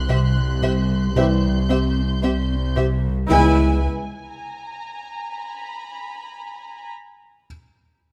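Close, detailed and lightly reverberant, this tense, ominous suspense-score fragment sets an intimate chamber violin melody over a woody second violin line, smooth-topped dark violas, soft cellos and double basses, a deep, round sub bass drone, a rubbery, bouncy square-wave bass riff and a barely audible vintage grand piano, while mellow horns and bright trombones add sustained chords from 1.2 s and a pure, floating symphonic violin texture hangs high above until 6.9 s as the harmony shifts from C to C#m7 at 3.3 s.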